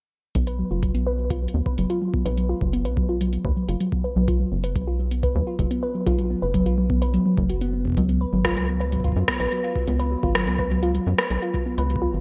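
IDM with an intricate, wistful mood, in which a soft, ringing harp-like synth pluck plays up-front arpeggios with chorus, cassette-tape colour, digital delay and a filter sweep over a rubbery, hollow square bass that carries its own filter sweep, while an overdriven analog drum machine's metallic hi-hats and rim clicks, with gated reverb and delay, ride on a deep, overdriven electronic kick, all set in a plate reverb and bright 1980s-style digital production as the harmony moves from B5 to C#7sus4 at 8.0 seconds in this brief excerpt.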